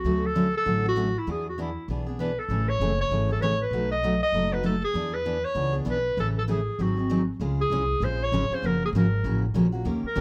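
A brisk swung pulse at 196 BPM in 4/4 drives this charming, lively slice of acoustic string swing in A major, cut from a longer piece. A bright, punchy clarinet carries the melody from 0.0 to 10.2 s, its jazz-style vibrato ringing forcefully between E4 and D#5, up front yet with a distant, roomy plate-reverb sheen. Beneath it, a picked steel-string dreadnought guitar supplies full-bodied accompaniment, while a woody, dark pizzicato upright bass anchors the low end from F#1 to E2. The harmony moves through Dmaj7, E7, Amaj7, B7, E7, Amaj7 and G#7 before slipping at 7.4 s into a new section that shifts to Db and then Gbmaj7. Light reverb wraps the whole trio.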